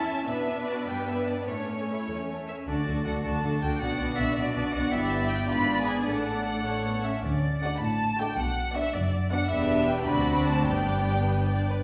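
Muted violins carry the up-front, veiled melody of this spirited, cheerful classical-period movement for string orchestra in D major, a quick 6/8 at 98-108 BPM played with rubato, while a second violin section adds a soft-edged line, violas supply a dark con sordino accompaniment, cellos hold the bass, and a distant double bass section joins at 2.7 s, all heard in a reverberant recital hall within a short cut from a longer piece.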